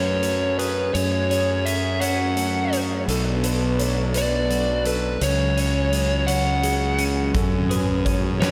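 A dark, fuzz-drenched lead guitar carries a brooding melody over a growly, overdriven fingered bass, a silky detuned string pad and, in the background, a bright twelve-string electric guitar and a felt-muted upright piano picking out arpeggios, with echo on the guitars and piano. The huge arena drum kit arrives at 0.2 seconds with a punchy kick and fat snare, driving this cathartic post-rock passage in 6/8 as the chords move from F#madd9 through Bm7 and C#sus4. A lush hall reverb gives the whole mix a big arena sound.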